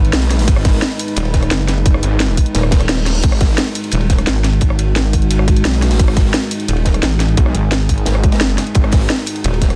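A tight, up-front electronic kick drives this dark, technical drum and bass excerpt at 174 BPM in G# minor, locked on a G#m chord. Its mechanical, futuristic mood comes from a heavy, pulsing pluck wobble bass with saturated, compressed chorus, and a thick, detuned saw bass with overdrive that drops out between 3.6 and 5.7 seconds. Underneath, a layered electronic kit with a cracking snare sits over a gritty, rolled-off breakbeat kit in the background, while a deep, moody pad with sidechain pumping and built-in reverb hovers, and a very quiet reverse cymbal enters at 2.7 seconds within a dense, heavily limited master.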